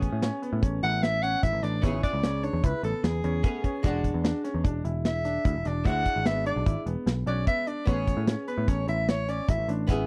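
A mellow soprano saxophone carries the melody in a jazz-style solo, entering at 0.8 seconds and playing until 9.7 seconds, its tone roomy and slightly distant yet sitting up front. This is driving, bright progressive instrumental band music in A major, moving at 149 BPM in a straight 5/4 over a harmony that shifts from Amaj7 to E7 and back to Amaj7. Beneath the horn, a modern acoustic drum kit plays hi-hat, kick and snare with a dark, rolled-off top, a tight kick and a medium-tuned snare, placed prominently in the mix. A picked electric bass, foam-muted and growly, holds down the low end up front, while a clear grand piano plays arpeggios and a clean, compressed hollow-body archtop guitar, double-tracked, fills in the accompaniment. The sound is dry and close in the manner of a 1970s studio with a small room ambience, and the clip is cut from a longer piece.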